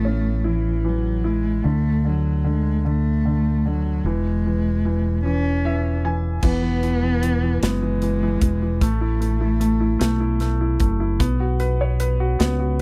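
A dark, woody cello sings the melody from the start, bowed by a single player with vibrato and a sul tasto tone, over a clear, smooth grand piano with a vintage feel and a round, punchy fingered electric bass. This tender, swaying pop ballad moves in a slow six-eight lilt, its harmony drifting from Aadd9 through D5 to E before settling on A5 and Bsus2. The piano plays a short fill at 5.2 seconds, and at 6.4 seconds a modern acoustic drum kit enters with bright cymbals, hi-hat, a medium-tuned snare and a punchy kick. The cello falls silent at 10.4 seconds, and the piano, bass and drums carry the final moments. The sound is dry and close, in the manner of a 1970s studio, with every part placed up front in what is clearly a passage cut from a longer piece.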